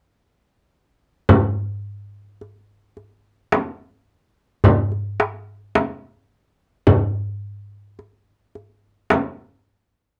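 A crisp, metal-shelled darbuka played with soft hands and a warm, vintage, band-limited frame drum enter together at 1.3 seconds, the darbuka close and dry and both up front, carrying this passionate fragment of an Arabic maqam ensemble piece through a straight 10/8 groove in a dark, warm production with a modest small-room reverb.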